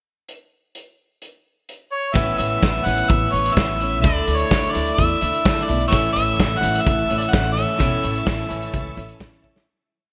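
A straight 4/4 pop groove opens the piece at 0.3 s on a loose indie drum kit, with a punchy kick, medium-tuned snare and hi-hat sounding up front in a small room with a rolled-off top. This is a jangly, warm whole piece of folk rock and heartland rock, moving from a short pickup bar into a pre-chorus over Aadd9, Dsus2 and A. An overdriven, gritty harmonica carries the motif-based melody up front, with vibrato, tongue slaps and scooped notes, and it enters just before the rest of the band joins around 2.1 s. Beneath it, a woody upright bass on gut strings drives thumpy eighth notes, while a clean, direct-recorded electric guitar rings out compressed chords, and a dark, boxy old ladder-braced acoustic guitar strums open shapes in the background with a subtle chorus. A very quiet, shouting tonewheel organ holds chords with swells and changing inversions through a slow rotary speaker, complete with key click. 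Lush hall reverb and a bright 1980s-style digital sheen frame the band until a fade-out begins at 7.8 s, with a late drum fill on the way out.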